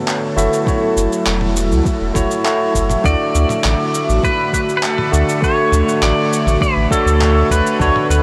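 A straight 4/4 groove at 101 BPM from a soft, overdriven electronic kick and a gritty, sampler-style soul kit of handclaps, shaker and toms sets a sunny, blissful sunset chillout mood in D major, as a round sub bass with tube saturation enters at 0.4 seconds beneath a barky tine electric piano through a combo amp with diffuse delay and an airy, breathy pad carrying chorus and phaser over F#m7 and Dmaj7, until a twangy pedal steel guitar arrives up front at 3.1 seconds with slide, volume swells and tape echo, the whole mix soaked in a dreamy, huge reverb.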